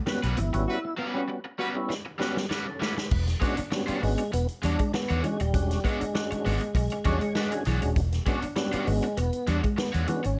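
Gently reverberant and punchy, this energetic, playful funk excerpt sets a full, lightly overdriven tonewheel organ melody through chorus vibrato and a slow rotary speaker over a dark, round, foam-muted fingered bass up front, a big-room big-band drum kit with a medium-tuned snare, percussive organ stabs with key click, a bright hollow-body guitar accompaniment, a slightly broken-up picked guitar riff in the background, and a very quiet burst of ringing, high-tuned congas at the start, while a distant, roomy horn section adds a second line from 0.7 to 1.7 s during a break that lasts until 3.1 s and closes with a drum fill, with an organ fill arriving later.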